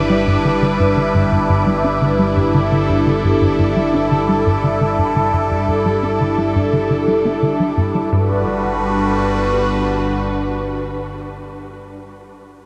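Luminous and expansive, this cut from a longer piece of sequencer-driven ambient space music sits in a huge, wet reverb with a cassette-tape character. Up front, a swirling, detuned phased analog pad holds sustained chords, while a tight, punchy sequencer bass drives a sawtooth riff until 8.4 s, its filter sweeping through the first 8.1 s, and a low analog drone with pulse-width modulation hums beneath until 10.2 s. An airy, breathy wind-like noise texture drifts in the background, and the harmony moves from G to Gmaj7 at 8.1 s.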